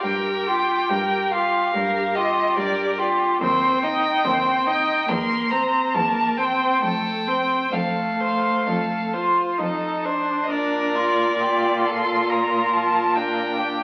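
A bright, focused first violin sings the melody up front, its vibrato lending a tender glow to this slow, romantic string quartet movement in B-flat major, taken from a longer piece. The tempo hovers around 63-73 BPM with a free, rubato feel. Beneath it, a clear second violin traces a supporting line, while a warm, smooth viola sits up front alongside the melody with an even accompaniment. A rich cello anchors the bass from farther back, its portamento and vibrato adding expressive depth. The harmony moves from G minor seventh through C minor and C7 toward F before settling on B-flat at 10.5 s. Everything is heard through a generous studio reverb and the crackle of a very old 78 rpm record, giving the quartet a distant, nostalgic patina.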